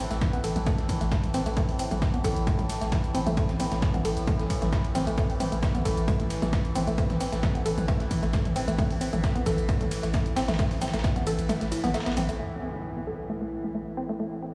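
Driving and relentless, this cut from a longer piece of peak-time techno runs at 133 BPM in a straight 4/4, in A minor, opening straight into a drop. A punchy, layered electronic kick sits up front with the small-room character of a re-recording. It pounds until it drops out at 11.5 seconds. Around it, a punchy analog drum machine supplies crash, hi-hat, ride, shaker and toms, pumped and low-passed, while a gritty, overdriven sampler-style soul kit adds hi-hat, ride and a medium-tuned snare with a high-passed edge. A woody, wave-folded pluck plays the riff with a fast, short-decaying attack, softened by chorus, pumping and dub echo, over a saturated sine sub bass holding A1 and a resonant, ring-modulated drone whose overtones keep shifting beneath its slow attack and long release. At 12.4 seconds an electronic impact lands as the synth arpeggio sound gets a filter sweep to close, all heard as if blasted through a big system in a bare stone room.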